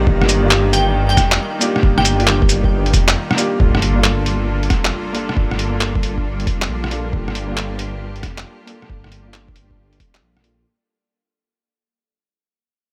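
Future garage with a wistful, melancholic mood, cut from a longer piece: a soft, felt-muted upright piano with delay and a low-pass filter accompanies a bright, biting symphonic string section holding sustained chords, both pumping against the sidechain, over an up-front, menacing detuned saw bass that swells and grinds with saturation. Muffled, overdriven sampler-style drums, a thumpy pitched-down kick plus cabasa, handclaps, hi-hat and rim click, carry a swung groove in a small room, while a glassy, crystalline wavetable pluck with chorus sounds a brief figure near the start. After a short break, a very quiet electronic impact lands at 3.6 seconds as the chords move from Ebmaj7 to Gm7, a filter sweep moves across the piano, and the music fades out to 10.7 seconds.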